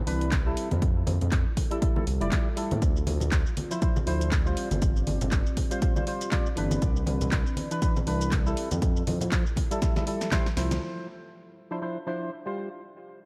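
Hollow, percussive organ stabs with lush chorus, tape echo and sidechain pumping open this smooth, late-night deep house excerpt at 120 BPM in D dorian. They arrive together with a gliding sawtooth-and-square synth bass that pumps with the sidechain and a tape-colored analog drum machine of handclaps, hi-hat, shaker and snare, and moments later a punchy electronic kick sits up front while bright, soft-handed congas play in the background. A very quiet, moody, detuned ambient pad with a sub octave and its own reverb holds sustained Cmaj9, Fmaj9, Dm9 and G7sus4 chords over the swung sixteenths in an otherwise dry room. After a drum fill and band accent, the kick drops out at 10.4 seconds and the bass, drum machine and congas stop at 10.8 seconds, leaving the pad and organ stabs to close.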